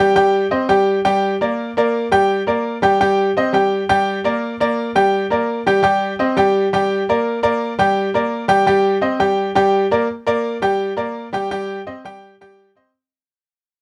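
Latin piano piece at a driving 169 BPM in straight 4/4, with a fiery mood carried by a lone bright upright piano playing between G3 and G5 over a cycle of C5 and Gm chords that turns to Cm near the close. The piano sounds brilliant and woody, slightly detuned and up front, with audible action noise captured by close, detailed microphones in light reverb. This cut from a longer piece fades out from 10.1 s to its end at 12.9 s.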